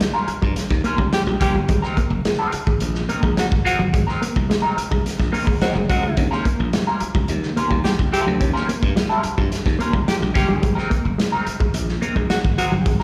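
A crunchy, saturated breakbeat drum kit with a tight kick and rolled-off top opens this gritty, playful funk excerpt at 107 BPM in Eb mixolydian, alongside a clean, picked electric guitar coloured by wah, phaser and slapback echo and a dark, compressed, fingered guitar riff; a bright, growly slap bass joins at 0.3 seconds, and a breathy tenor saxophone with vibrato and scooped notes whispers an intimate second line from 1.1 seconds as the chords move between Eb9 and Ab9, all heard live through the venue's PA with a moderate club reverb.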